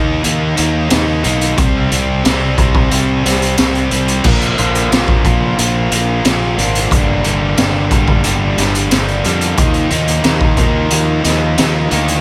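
Two overdriven electric guitars open this dark, angsty alternative rock excerpt, one of them biting and both of them warm, picking a riff alongside a growling, fingered bass that is overdriven and bright. A raw garage drum kit joins at 0.2 seconds and sits up front, its gritty, saturated sound built on a high-tuned snare, a boomy kick, hi-hat and crash cymbal, with a rolled-off top and the closeness of a small room. At 4.2 seconds a third guitar arrives in the background, brighter than the others, double-tracked and overdriven, thickening the riff. The harmony moves through Bb, Gm and Ebsus2 under a steady, straight feel. Light reverb gives the whole a slightly roomy, unpolished edge, in keeping with its quiet-loud style.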